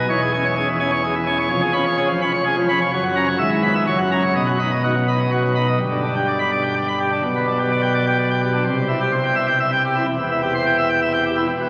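A solo pipe organ on full plenum, its mixtures ringing with baroque voicing and a crisp chiff, opens this majestic, dazzling classical toccata at 127 BPM in 3/4 in B major, shifting to G major at 5.8 s, heard up front in a cathedral's long, wet reverb through the crackle of a very old 78 rpm record in a short passage cut from a longer piece.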